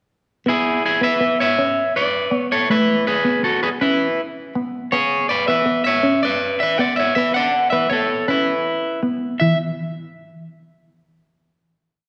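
A straight 12/8 pulse at 107 BPM carries this short, joyful highlife piece in E mixolydian, where an up-front, slightly broken-up electric guitar picks a twangy, carefree melody of call phrases, partly doubled in thirds, over a second, fingered guitar's phaser-tinged ostinato moving through E, Asus2 and E5, all bathed in a wet scoring-stage reverb that lets the final note ring from 9.4 to 11.6 seconds.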